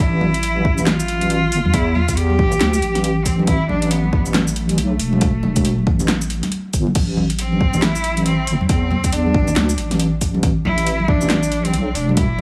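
Deep dubstep in A minor at 138 BPM, this heavy, meditative passage from a longer piece moves with a half-time feel and a 60% swing on the sixteenths. A deep, soft wobble bass sits up front for the whole stretch, its detuned square-and-sine tone dark, compressed and thickened by chorus, holding a low register between E1 and E2. Above it a single bowed cello carries the melody between A3 and G4, its focused, vibrato-laden sound with a smooth top trailed by dub echo. An overdriven electronic kick drum anchors the beat alongside a layered deep house kit of punchy snare, metallic hi-hat, handclaps, shaker and crash, while thick-skinned congas played with hard hands sit in the background under their own dub echo. The harmony rests on an A5 power chord before shifting to A minor at 7.0 seconds, and both halves play as drops in a dry, small room with little reverb.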